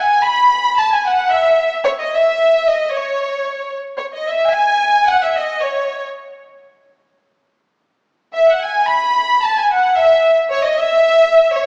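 Mexican folk music in C# minor, this passionate, dramatic excerpt moves at 112 BPM in 2/4 with a light swing on the eighth notes. A warm symphonic violin section carries the solo line alone, bowed with vibrato and sitting up front in the mix, its tone lush and even with a smooth top. The violins play from the start until 6.0 seconds, fall silent, then return at 8.3 seconds and continue to the end at 11.7 seconds, staying in a high register between C#5 and B5. The same opening phrase material repeats after 4.0 seconds, giving the short passage a restated, insistent character. A wet recital hall reverb surrounds the ensemble with a long tail, while the overall sound has the narrow, boxy quality of a small speaker.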